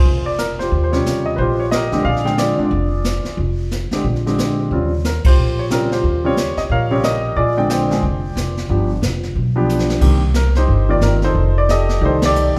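Up front and present, a long-sustaining grand piano carries the melody in this relaxed, warm swing jazz trio passage at 181 BPM in Bb mixolydian, cut from a longer piece, with a woody, thumpy pizzicato upright bass and a brushed drum kit of dark cymbals and a boomy kick underneath, moving through Bb13, Eb13, G7, Cm7 and F13 changes, the band hitting accents at 5.2 and 12.2 seconds around a short drum fill at 9.7 seconds, all set in a recital hall's reverberant glow.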